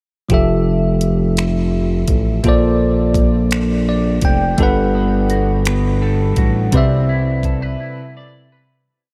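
Soaked in a huge, dreamy reverb, this short, intimate slow six-eight R&B piece sets bell-like, chorused tine electric piano chords, with a brief fill at 3.5 seconds, over a smooth, sliding sawtooth synth bass and an up-front electronic kit of finger snaps, tape-warm hi-hat and a knocking kick, while a twangy, slightly broken-up electric guitar with chorus enters lower in the mix at 4.6 seconds with a fingerpicked roll before the piece fades out from 6.7 seconds.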